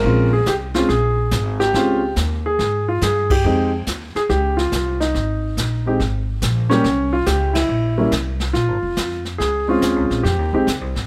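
Lightly reverberant, this cool, late-night jazz piano trio excerpt swings at 141 BPM in 4/4: an up-front warm grand piano carries the melody over Bbm7, C7b9 and Fm7 harmony, a woody, thumpy gut-string upright bass plucks the low line, and a brushed kit with dusky cymbals and a boomy kick keeps time, the whole band landing together on accents at 3.2 and 7.5 seconds.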